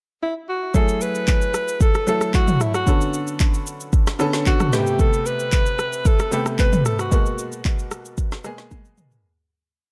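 A breathy alto saxophone leads this short, late-night amapiano piece, entering at 0.2 seconds in the pickup bar with punchy, pop-style hook phrases that carry a light vibrato, a smooth top and a digital delay. A worn, brilliant baby grand piano then plays push-chord rhythms in drop-2 voicings with grace notes, moving through F#m9, Bm9, Am9 and G#m9. The layered electronic deep house kit sits up front with a deep, soft kick and a woody snare, keeping a steady shaker and syncopated rim clicks alongside handclaps and toms. The production is dark and set in a small room ambience. The piece fades out from 7.1 seconds, and a drum fill at 8.7 seconds closes the groove.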